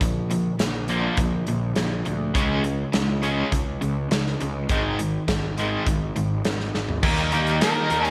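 Classic rock with a swaggering, driving feel, this short excerpt moves at 102 BPM in a straight 4/4, cut from a longer piece. Two overdriven electric guitars play riffs from the start, the cranked stack guitar sitting in the background with tremolo alongside the crunchy one, over a fuzz-soaked, round electric bass and a big acoustic rock kit with a punchy kick, medium-tuned snare and bright cymbals up front. The chords pass through Bb, Db5 and Ab5 before a drum fill at 6.7 seconds leads into a new section on Eb. There a very quiet tonewheel organ with a shouting, lightly overdriven tone and slow rotary speaker enters with sustained chords at 7.0 seconds. At 7.6 seconds a dark, distorted octave-fuzz lead guitar takes a melody on Bb4, shadowed by a very quiet second fuzz line and a brief touch of jingly tambourine. Light reverb and small room ambience give the whole a compact sense of space.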